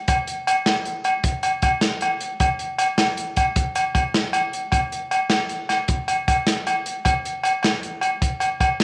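A crunchy breakbeat drum kit and ringing agogo bells start together at 0.1 s in this warm, danceable highlife fragment in 12/8, cut from a longer piece. The saturated, gritty kit sits up front with a tight kick, a medium-tuned snare and hi-hat, its tone mid-forward with a rolled-off top. Alongside it, the vintage, band-limited agogo bells also sit close, and the pair share light reverb and small room ambience through 8.8 s.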